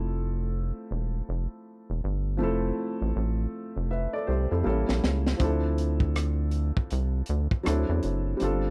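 R&B and neo-soul at 80 BPM in D minor, this short, smooth and soulful cut from a longer piece swings gently, with a woody upright piano carrying the chords from Fmaj7 through A7b9 and Dm9 to D9, its action noise audible and intimate. Beneath it a rubbery, hollow square bass bounces with a nasal filter pluck, while a crunchy breakbeat kit of kick, snare, rim click and hi-hat enters at 4.9 s with a fill, gritty and saturated with a high-tuned snare and rolled-off top. The dry, close sound recalls a 1970s studio, with piano, bass and drums all up front.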